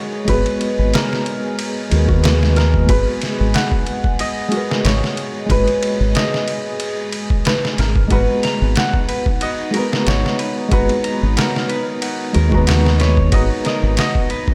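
A lightly swung 92 BPM groove in 4/4 anchors this brooding, hypnotic trip hop piece in G# minor, with a sampler-style drum kit entering at 0.3 seconds: a gritty, pitched-down and compressed sound of thumpy kick, medium-tuned snare and ride cymbal, re-recorded in a large room and placed up front. Alongside it, a deep dub fingered electric bass holds the low end, round, punchy and dark, sitting prominently in the mix. Over a single G#m9 chord, a hammered santur carries the melody with a shimmering, ringing tone sent through tape echo, while a felt-muted upright piano adds soft, intimate accompaniment with tremolo and audible action noise. A moody ambient pad of detuned sawtooth and sine layers with a sub octave sustains chords in the background, its slow attack and long release softened by chorus and its own reverb. At 8.1 seconds a slightly broken-up, twangy electric guitar joins with arpeggios in tape echo, tucked behind the rest, as this cut from a longer piece plays out under a light reverb.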